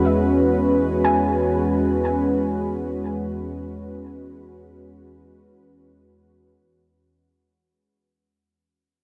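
Luminous and peaceful, this short ambient fragment in E major drifts in free time over a single Eadd9 chord, fading out across its length. A smooth, detuned analog pad with a warbling, vintage character and chorus sits up front, holding sustained chords from 0.0 to 6.6 seconds, while a soft, round pluck with a dark edge plays gentle high arpeggios through lush chorus and delay until 4.8 seconds. A long, wet cathedral reverb and a dark, warm production wrap the whole piece.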